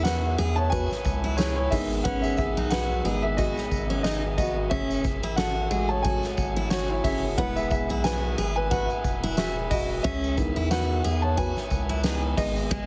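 Piano-driven pop in C# minor at 90 BPM with a light sixteenth-note swing, this earnest, driving excerpt features an intimate, up-front concert grand piano with audible action noise taking a solo across the full 12.9 seconds, joined by a bright, full-bodied picked steel-string acoustic guitar riff, a deep, round analog bass, a soft-mallet drum kit with a fat snare and boomy kick on hi-hat, ride cymbal, snare and kick, and a jingly tambourine in the background, all moving through C#m7, G#m, F#madd9 and E under light small-room reverb and a heavily compressed radio sound.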